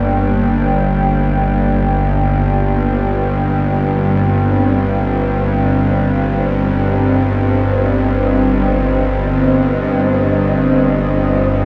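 In free time, this dark ambient drone excerpt feels cavernous, with a tense, string-like bowed drone sitting up front in the low register, its bright sawtooth tone carrying vibrato and its own built-in reverb. Above it, a mellow analog pad of detuned sawtooth and triangle layers with a sub octave holds slow-attack chords through a chorus effect, moving from G minor to C minor over G at 3.1 seconds. A wet spring reverb wraps the whole sound in a long, shadowy tail.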